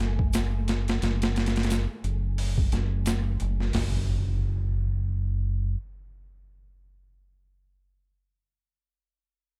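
A swung 88 BPM trip hop groove in F# minor opens on a gritty, pitched-down, overdriven boom bap kit with a thumpy kick and high-tuned snare, a round, dark dub bass under a filter sweep holding F#1 until 5.7 seconds, a bright tube shaker in the background, and a very quiet, mellow string-machine cello chord of F#madd9, all hypnotic and smoky until the kit drops out near 3.9 seconds and an electronic impact carries the fragment on to 8.0 seconds.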